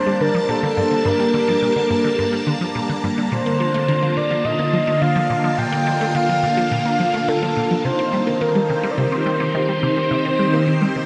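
Ambient, sequencer-driven space music at 106 BPM in a straight 4/4, mysterious and hypnotic, in which a breathy, flute-like synth lead carries the melody up front with subtle chorus and tape echo, a swirling vintage string machine holds sustained chords through ensemble chorus and phaser, and a juicy, squelchy resonant blip pluck repeats a low riff with phaser and tape echo, all moving from Gmadd9 to Bbmaj7 to Cm inside a huge, wet reverb with the soft grain of cassette tape in this brief cut from a longer piece.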